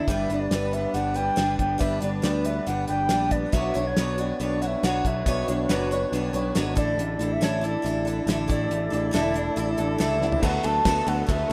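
Hopeful and open-road, this short folk rock and heartland rock excerpt in D major moves at 139 BPM in a straight 4/4. A mellow, distant wooden flute carries the melody over a shimmering twelve-string acoustic guitar, a slightly broken-up electric guitar riff with lush chorus, and a round, up-front picked bass. A dry, damped 70s drum kit drives things along while a fat tonewheel organ on slow rotary sits in the background, and a twangy lap steel with slapback echo adds a second line from 5.7 to 10.3 seconds, all in a rough home demo mix with little reverb.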